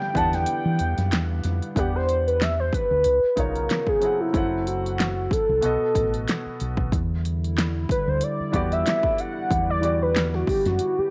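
A velvety synth lead with chorus opens over woody upright piano, a hollow, airy pad and a punchy pop kit of kick, snare, hi-hat and handclaps in this late-night, introspective neo-soul R&B excerpt at 93 BPM in E minor, where the kick drops out from 0.5 s to 1.8 s, a round, dark fingered bass enters at 0.2 s, and from 1.8 s the lead takes a soft solo with vibrato and portamento over chords moving from Em7 through C#7, F#m7b5 and B7 as the pad returns at 7.3 s in a dry, intimate mix.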